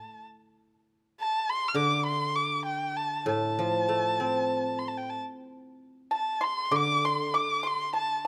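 Graceful and wistful, this brief passage of Chinese traditional chamber music is cut from a longer piece and moves with a free, rubato feel. A single bowed erhu opens at 0.0 seconds and carries the melody high in its range, up front, with a soft attack, expressive vibrato, gliding portamento and a smooth top to its warm tone. At 1.7 seconds the guzheng joins with fingerpicked accompaniment in a lower register, its acoustic strings ringing and silvery and also placed up front. Near the close, at 6.1 seconds, the pipa adds a high second line from the background, its fingerpicked notes dry and percussive. Close, detailed microphones and a light reverb give the small ensemble an intimate, clear presence.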